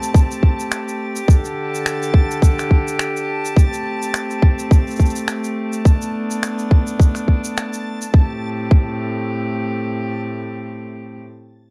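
An overdriven, tight electronic kick drum sits up front in this delicate, intimate folktronica piece in A minor at 105 BPM, its punch carrying the sound of a large room, while acoustic shaker and finger snaps with a brushed touch ride a light 16th-note swing. A distant, reedy string quartet, one bowed player per line with light vibrato and a gut-string tone, holds sustained chords moving through Am7, Dsus4 and Bm7, as a dreamy, detuned backwards texture swells high in the background with its own reverb. The shaker, snaps and texture fall away around 8.1 s, the kick stops at 8.9 s, and the strings carry on alone until 11.2 s in a dark, lightly reverberant mix.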